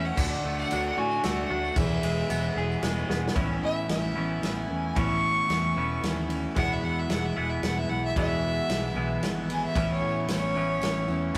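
A clear, biting fiddle with light vibrato and analog delay opens this hopeful, nostalgic folk and heartland rock excerpt in E mixolydian at 112 BPM in 3/4, over a bright picked steel-string acoustic guitar with audible finger squeak, a twangy compressed twelve-string electric guitar riff, a fingered electric bass, a very quiet jingly tambourine and a natural country drum kit with a punchy kick, whose fill at 3.1 seconds leads into an intense fiddle solo from 3.4 seconds, all set in a rough rehearsal-room sound with moderate reverb and saturation.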